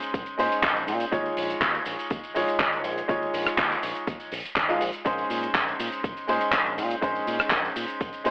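A bright baby grand piano with audible action noise opens this sleek, sensual nu-disco excerpt at 122 BPM in Bb minor, its sidechain pumping chords moving from Bbm11 to Eb9sus4 and back at 5.1 seconds alongside a dry, mid-forward 70s drum kit of handclaps, hi-hat, rim click and shaker. A fingered electric bass with an envelope filter adds punchy low notes, while a layered, tape-colored electronic kick drum re-recorded in a small room sits beneath. The whole recording has a gritty hardware character with a telephone-like tone.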